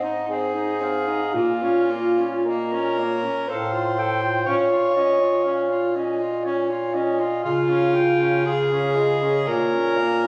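Up front and clear, the alto saxophone carries a second line from 0.3 s in this elegiac, solemn classical fragment for single-reed quartet, moving freely in a slow 3/4 at around 53-61 BPM over chords of Ab, Bbm, F/A and Db. Above it, a distant, roomy clarinet sings the melody; a bright tenor saxophone with light vibrato fills in the accompaniment; and a vintage-toned bass clarinet anchors the bass close to the listener. The sound is that of a phone recording in a recital hall, with added club reverb and compression.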